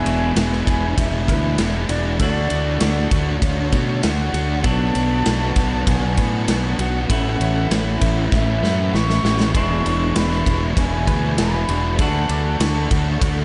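Dreamy and wistful, this short cut from a longer shoegaze and dream pop rock piece moves at 98 BPM in a straight 4/4, drifting through E7, Dmaj7, Bm7 and Aadd9 in a huge ambient reverb with a seven-second-plus tail, the whole mix rolled off at the top end. A breathy, mellow concert flute with vibrato and tape echo carries the melody over a very quiet, twangy clean guitar playing arpeggios, while two overdriven guitars each play a riff, one dark with analog chorus and the other bright and set back in the mix with reverse reverb. Fuzzed fingered bass sits up front, and a big rock kit with a punchy kick, bright ride and medium-tuned snare enters at 0.1 seconds and plays a fill from 8.3 to 9.5 seconds.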